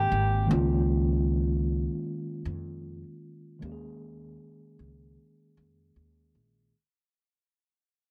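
A dark, slightly broken-up electric guitar through a small old amp sounds at the very start of this short cut from a longer lo-fi hip hop piece, playing a fingered, compressed G4 with analog delay that lasts only until 0.5 seconds. Beneath it, a mellow tine electric piano carries the accompaniment through its built-in speakers, clean and up front with a cassette-tape tint, moving from Abmaj9 to Db69 at 0.5 seconds and on to Eb7sus4 at 3.6 seconds. A woody, thumpy upright bass with steel strings plays pizzicato in the low register, sitting close and present alongside the keys. The tempo is an unhurried 77 BPM in 4/4 with a gentle swing on the sixteenths, giving the dreamy, nostalgic mood a relaxed sway. The dry, gritty hardware sound carries little reverb, and the whole passage fades out over its roughly seven seconds.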